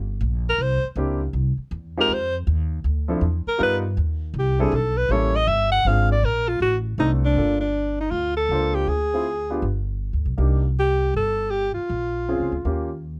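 Swinging and smoky, this short cut from a longer small-group swing and bop piece moves in a loose, lilting 4/4. An upright bass opens the recording, its plucked steel strings sounding woody and up front as it anchors the low end throughout. The alto saxophone enters at 0.5 s and takes the lead, soloing through the first passage until 7.4 s with a jazz-style vibrato that sits close and present. A grand piano joins at 1.0 s, comping beneath the horn in a warm tone, a touch further back in the blend. At 7.4 s the music shifts into a new section with darker minor harmony, and the close, detailed recording keeps the room dry and intimate.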